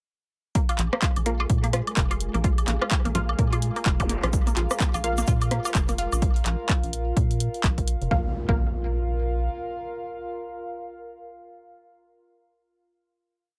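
A swung four-on-the-floor pulse at 127 BPM drives this clinical, sparse minimal techno piece, with an overdriven, punchy kick up front, programmed claps and closed hats, overdriven woodblock, claves, rim and conga clicks in cross rhythm, a close, dry egg shaker in sixteenths from 4.3 s, a rubbery, hollow square bass in a dotted rhythm, a squelchy, ring-modulated blip pluck looping a 3-step sequence that drifts against the bar, muted dub chord stabs with tape echo, a flickering granular texture holding a high note in the background, background zaps and impacts, and a warbling, lo-fi pad of slowly shifting chords that carries on with the stabs into a final chord from 8.1 s to 11.9 s.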